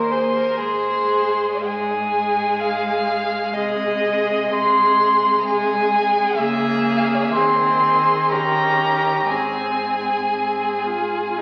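In an unhurried three with uneven, rubato beats, this tender, romantic classical string quartet movement unfolds as a brief cut from a longer piece, heard through the crackle of a very old 78 rpm record and a lush scoring-stage reverb. A clear, focused first violin sings the melody with vibrato, sounding somewhat distant yet up front. Beneath it, a smooth, even second violin traces a rich inner line, a clear viola supplies bowed accompaniment, and a quieter cello with a smooth top anchors the bass, all four playing together until the phrase settles home at 9.3 seconds.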